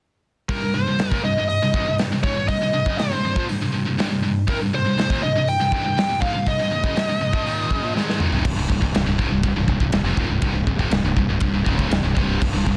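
A warm, distorted high-gain lead guitar carries the melody up front until 7.9 seconds in this relentless, aggressive heavy metal piece at 121 BPM in C phrygian, over two bright, scooped high-gain guitars picking a low riff, one up front and one in the background, and a big acoustic rock kit with a punchy kick and a dark, rolled-off top, whose fill at 8.0 seconds leads into a second section where a growly, fuzz-overdriven fingered electric bass joins, set in light reverb and a dense, heavily limited modern master.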